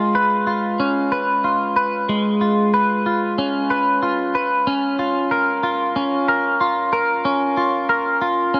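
Ethereal and blissful, this brief dream pop excerpt features a lone clean electric guitar, bright and twangy up front, shimmering through analog chorus and digital delay in a huge ambient reverb as it moves from C#7 to C#6 at 4.7 seconds.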